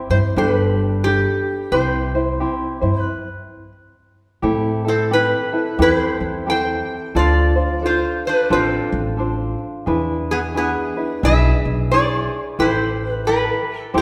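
Swung eighths at 88 BPM in 4/4 carry this relaxed, sunny Hawaiian piece, cut from a longer work, where a bright, nasal metal-body resonator slide guitar played with fingerpicks sings the melody over a light, fingerpicked tenor ukulele and a woody, thumpy pizzicato upright bass on gut strings, all three up front in a wet, church-like hall reverb, moving through Gadd9 and C in C major before a stop at 3.1 s and a turn to A minor at 4.4 s, where the harmony cycles through Am7, Dm7 and E7.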